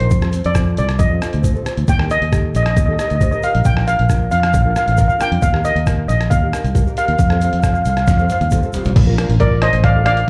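A shimmering, metallic steel pan carries the melody from the first beat, struck with hard rubber sticks and given a slapback echo, over a small, dark fingerpicked nylon-string guitar with audible finger squeak, a round, foam-muted fingered electric bass, and a gritty, pitched-down, sampler-style drum kit with a thumpy kick. This is carefree, sunny calypso in Bb major at 136 BPM, moving through F, Eb, Bb and Ebadd9 chords while a grainy tube shaker sits in the background. A drum fill at 8.1 seconds leads to a Bbmaj7 at 9.0 seconds, all heard as if played live through a club's PA in this short cut from a longer piece.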